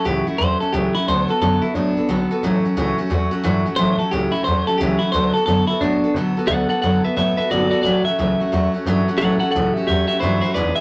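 Set in a moderate studio reverb, this upbeat, rollicking swung rock fragment, cut from a longer piece, features a bright, twangy, compressed clean electric guitar soloing up front throughout its 10.8 seconds over a full-bodied picked steel-string acoustic guitar and a woody, thumpy pizzicato upright bass on gut strings, as the harmony moves between A6 and D6.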